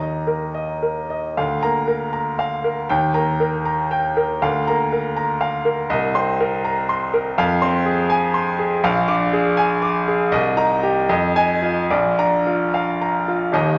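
A single high E-flat rings out from a bright, up-front grand piano before the harmony arrives at 1.4 seconds, moving through B-flat over D, E-flat, C minor seventh and F minor toward a B-flat seventh and a final B-flat at 11.9 seconds. This brilliant, sparkling classical piano study is cut from a longer piece and moves in a rubato 6/8 at roughly 71-83 BPM in dotted quarters, tuned to A4 = 441 Hz. The solo piano ranges from a deep Eb1 to D6 with an open, long-sustaining tone, set in a wet recital hall whose reverb carries a 1.5-second decay.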